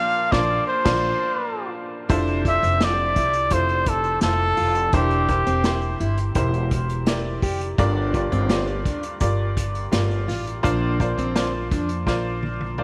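A straight 4/4 pulse at 84 BPM carries this anthemic, warm piano-driven pop passage in F major, cut from a longer piece, opening on a band accent as a breathy, close-miked trumpet sings the up-front, intimate melody with vibrato and a soft attack until 6.0 s. A clear, slightly detuned upright piano with a worn, woody tone supports it, while a thumpy pizzicato upright bass sits up front and a distant, roomy acoustic drum kit played with bundle sticks offers dark cymbals, a tight kick and a medium-tuned snare. From 2.1 s a full-bodied fingerpicked steel-string acoustic guitar riff sits in the background, and a drum fill at 12.1 s rounds off the passage, all set in light reverb and studio ambience.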